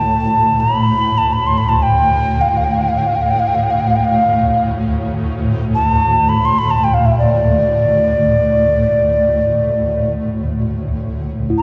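World meditative music with a spacious, contemplative mood, drifting in free time. A breathy, reedy alto ocarina carries the clay-toned melody up front with a straight tone and delay echoes, while a shimmering, ethereal pad sustains a low drone, its detuned, granular layers bloomed by chorus and an octave-up sheen. A bright, pure quartz singing bowl rings out just at 11.5 seconds, all set in a lush hall reverb within a dark production.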